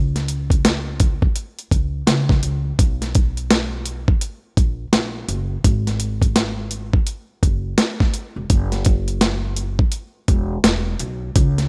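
A rough home demo mix with a digital ambience frames this smooth, warm jazz-hop excerpt, moving at 84 BPM in 4/4 with a 16th-note swing. A woody, growly upright bass played pizzicato opens at 0.0 s up front, and a gritty, compressed, overdriven soul sampler-style drum kit joins at 0.2 s with hi-hat, a thumpy kick and a medium-tuned snare, also placed up front.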